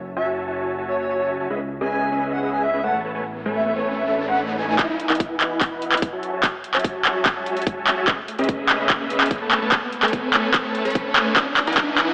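Heard as if through an AM radio, thinned by a high-pass filter and set in a moderate lush hall, this bright, playful future bass excerpt moves at 146 BPM in a half-time feel in E major, with a fat, nasal analog bass and a breathy, flute-like synth lead with chorus and delay pumping under the sidechain alongside a huge, up-front supersaw riff over F#m7, C#m7, Amaj7 and Emaj7. A background riser enters at 3.0 s, and at 4.8 s the bass and lead stop as a tape-warm dubstep kit with metallic hats and handclaps arrives with a punchy electronic kick for a build-up and drum fill. Through to 12.1 s a filter sweeps across the dense, compressed supersaw.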